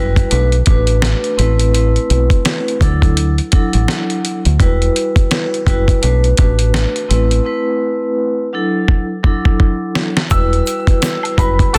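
The recording has a dense, heavily limited modern master with studio ambience, and it is cut from a longer boom-bap hip-hop piece in E minor at 84 BPM, in 4/4 with a swung feel. A dusty soul sampler-style drum kit sits up front with a thumpy kick and fat snare. A deep dub fingered electric bass, round and foam-muted, carries the low end, while a vibraphone played with medium mallets rings out, airy and metallic, through cassette-tape coloring and slow motor vibrato. The chords cycle through Bm7, Amadd9, Dadd9 and Emadd9, and a break arrives at 7.5 seconds, closed out by a drum fill. At 10.3 seconds a mellow, woody upright piano enters high with digital delay, over a close, dry egg shaker and woodblock tucked in the background. A distant, roomy jazz horn section lands a brief stab at 11.7 seconds, keeping the mood gritty and dark.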